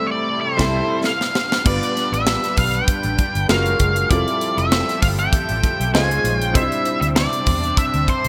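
Opening on a band accent, an up-front octave-fuzz lead guitar carries the melody over an intimate baby grand piano with ensemble chorus and a lush, detuned sawtooth pad treated with chorus and phaser, before a crisp fusion drum kit with gated reverb and a round, foam-muted fingered electric bass join at 0.6 seconds, a drum fill ushers in the glossy, upbeat swung groove of this 1980s jazz-funk pop fragment, and very quiet hard-hand congas arrive at 2.3 seconds amid bright digital production with light small-room reverb.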